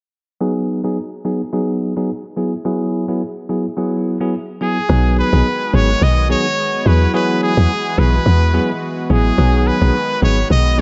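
Sunny and romantic, this afrobeats excerpt moves at 107 BPM with a lightly swung sixteenth-note feel, opening on a bell-like, clean tine electric piano alone under a filter sweep as the chords alternate between B6 and Eadd9. At 4.6 s a brilliant pop-style trumpet enters up front with vibrato, scooped notes and a delay. By 4.9 s a punchy, woody log drum bass with a fast attack arrives alongside a smooth, detuned sawtooth pad carrying chorus and tremolo in the background, all set in light digital reverb with a low-pass filter softening the top.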